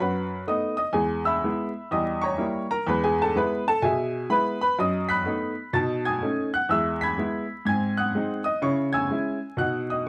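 Swinging and playful, this short stride jazz fragment moves at 125 BPM in 4/4 with a lilting swung feel in E major. A solo baby grand piano, brilliant and up front with short sustain, spans from E2 to B6 across the full 10.1 seconds, working through changes such as B7, Edim7, G#7 and C#m before landing on B. The piano sits in a moderate studio reverb, while the overall production is dark and warm with a layer of vinyl crackle.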